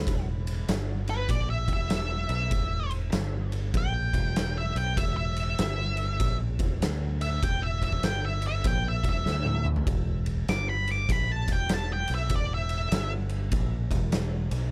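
A dry, up-front mix carries this gritty, brooding blues rock and southern rock excerpt in E minor at 98 BPM with a swung 4/4 feel, where an octave-fuzz lead guitar solos from 1.1 seconds over a round, punchy overdriven fingered bass on Em and an oversized low-tuned drum kit with a boomy kick, dark cymbals and a pumping big-room sound that drops in a brief fill at 9.3 seconds.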